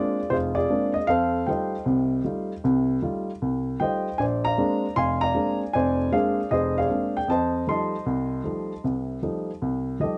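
A dark, mellow baby grand piano opens this brief solo jazz excerpt on a Bb9 chord, setting a relaxed, playful mood. The tempo sits at 155 BPM in 4/4 with a swung eighth-note feel, and the instrument is tuned slightly flat of standard pitch, to A4 = 436 Hz. The harmony moves between Bb9 and F9 dominant colors, reaching F9 at 1.1 seconds and returning to Bb9 at 4.2 seconds. The piano spans a broad range from deep F1 up to C6 and sounds intimate and up front, with audible action noise adding a natural, close-up presence. A light reverb surrounds it, and the top end is rolled off, keeping the tone dark and relaxed through to the cut at 10.2 seconds.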